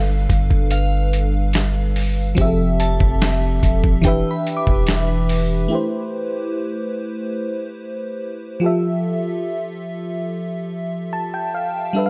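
Sensual and late-night, this slow contemporary R&B excerpt in A minor moves at 72 BPM, with a lush, dreamy FM electric piano layered over a soft pad and treated with chorus, carrying the chords from G7 through Fmaj7 and Em7 to Am9 and playing a fill from 10.7 seconds. Up front, a deep, sine-toned 808-style bass and a gritty, compressed soul sampler-style kit with a thumpy kick and medium-tuned snare carry the groove until about 5.7 seconds. From 0.7 seconds, a crystalline synth bell with chorus and delay sits in the background, lingering until about 6.6 seconds, after which the piano continues on its own. The whole mix is dry, with little reverb.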